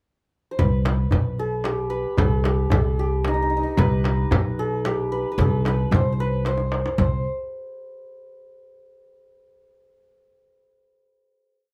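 A shimmering, ringing santur carries an ornamented modal melody up front in this short, longing and soulful Persian modal piece in C avaz esfahan, moving at 112 BPM in 3/4. It enters on a pickup at 0.5 s and is joined by woody, thumpy pizzicato upright bass on the low drum strokes, a small, bright frame drum and a deep, soft-handed, band-limited tombak in the background, all set in moderate studio reverb, with a drum fill at 6.5 s leading into the final note at 7.0 s.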